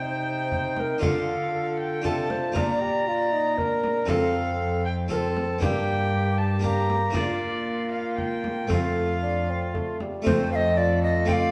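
An airy tenor recorder with vibrato and a chiffy attack carries the second line beside a nasal, gut-strung violin melody in this stately, courtly renaissance-style consort dance in F mixolydian at 117 BPM in 3/4, with a dark bassoon and a full, plucked harpsichord accompanying, a rich bowed cello holding the bass, and a deep, saturated frame drum played with hard hands entering at 0.5 s, the ensemble heard from further back in a reverberant stone room.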